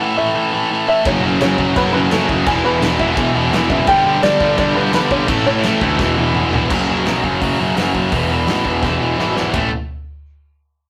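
A mellow, plunky open-back banjo carries the fingerpicked melody over an up-front, bright tight distorted guitar riff from the start of this upbeat, energetic punk rock excerpt at 170 BPM in A major. At 1.1 seconds a second tight distorted guitar sits in the background, a very quiet, double-tracked high-gain guitar joins, a growly fuzz bass adds its overdriven low end, and a loose acoustic kit with dark cymbals, a tight kick and a pumping small-room sound drives the beat, with drum fills leading into each new section. The banjo drops out at 6.5 seconds as the chords move to a new section, and the whole take has the rough, tube-saturated feel of a rehearsal room with moderate reverb.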